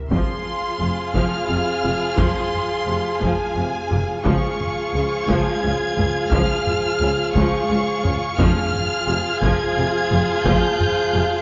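Epic orchestral film score in F minor, dark and relentless, moving at a slow 58 BPM in 6/8 as a taiko ensemble struck with heavy sticks drives beneath a distant, lush violin section carrying the expressive, vibrato-laden melody high above a second violin line and close, bowed violas. Mellow, roomy French horns hold sustained chords while smooth double basses and warm cellos sitting in the background anchor the low end through the shift from Fm to Db and back. Hard-mallet timpani on calf heads strike F2 only between 8.4 and 9.4 seconds, and a moderate scoring-stage reverb softens this short cut from a longer piece.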